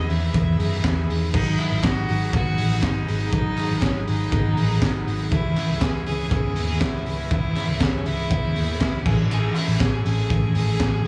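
Jangly indie pop at 120 BPM in a straight 4/4, this short cut from a longer piece feels nostalgic and youthful, moving through Emaj7, G#m7, C#m7 and Amaj7. A rich, smooth bowed violin carries the melody with vibrato and a tape echo, set over a mellow, clean electric guitar playing quiet arpeggios and a very quiet, bright, picked overdriven electric guitar. A buzzy overdriven combo organ with light vibrato sits in the background, while a soft, silky string machine holds sustained chords with a slow attack, phaser and ensemble chorus. Underneath, a vintage foam-muted fingered bass gives a round, punchy low end, and a raw garage drum kit sits up front with a punchy kick, high-tuned snare, dark cymbals and a gritty, saturated, pumping small-room sound. Distant, hollow group handclaps join at 0.8 seconds, and the whole mix carries the character of cassette tape with studio reverb.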